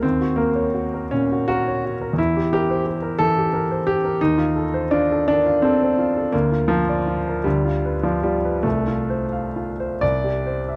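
Close, detailed microphones and light reverb frame a clear, intimate grand piano up front, its action noise audible beneath the notes. This hopeful, lyrical romantic character piece for solo piano unfolds in a rubato 6/8 at roughly 42-60 BPM in F major, ranging from C2 to F5 across a short passage cut from a longer work. The harmony drifts from Ebm7 through C7/E, F7/Eb, Bb/D and G7/D before settling on F/C at 8.6 seconds and closing on an open C5 at 10.0 seconds.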